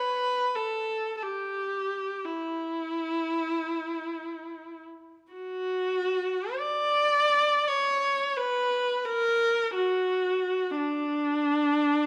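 Classical and mournful, this meditative excerpt features a single unaccompanied viola played with a bow in free time, its rich tone shaded by vibrato and portamento as it moves expressively between D4 and D5 across its 12.1 seconds. The close, detailed microphones place the player up front, while a moderate concert hall reverb with an RT60 of 1.9 s lends the instrument a distant, spacious quality.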